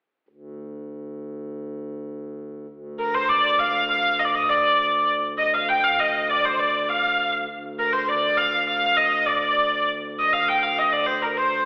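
Set in a straight duple metre, this driving, mysterious medieval excerpt opens on a reedy, breathing pedal harmonium drone held low and close, before a bright, nasal hurdy-gurdy enters up front at 3.0 seconds with an airy, wheel-bowed melody, all heard through a telephone-thin tone and the wet reverb of a recital hall.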